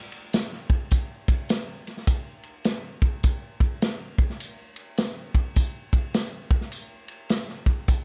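A dry cut from a longer soul piece carries a warm, joyful mood at 103 BPM in 4/4 with a swung eighth-note feel, as an up-front natural acoustic drum kit with a punchy kick, medium-tuned snare and ride cymbal enters at 0.1 seconds and a jingly tambourine sits in the background from 0.3 seconds.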